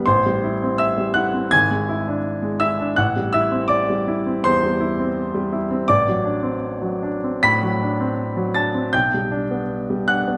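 A clear, polished baby grand piano sits up front as the sole voice in this hopeful, warm romantic character piece, moving freely in rubato at about 82 BPM in 4/4 across a span from G#1 to B6. Its harmony drifts from Am7 through E7/G# and back to Am7, then on to D7/A and G/B, all within the opening ten seconds of an excerpt cut from a longer work. A wet recital hall reverb with a 1.5-second decay surrounds the present, polished tone.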